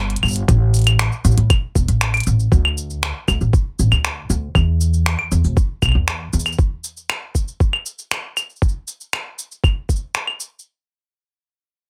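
A straight 4/4 pulse at 118 BPM drives this short folktronica passage, which is cut from a longer piece and tuned slightly low to A4 = 438 Hz. An acoustic upright bass opens at 0.0 s with dark, woody pizzicato on gut strings, moving between E1 and A2 before dropping out at 6.5 s. A minimal electronic kit of claves, finger snaps, clicky hi-hat and shaker sits lower in the balance, its tape-warm, produced tone re-recorded in a small room. A sampler-style kick arrives at 0.5 s, compressed, pitched down and muffled, landing with a thumpy weight. All three parts sit up front in a dry mix with little reverb, giving the hopeful mood a close, intimate feel.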